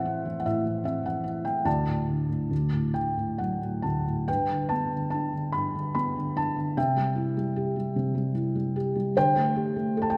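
A felt-muted upright piano, soft, dark and intimate with audible action noise, plays alone and up front in this calm, lyrical classical excerpt in G major and 3/4, drifting with rubato at 66-77 BPM through chords from Am to D, G and C before reaching D7sus4 at 9.2 seconds, all set in the wet, lingering reverb of a church or concert hall.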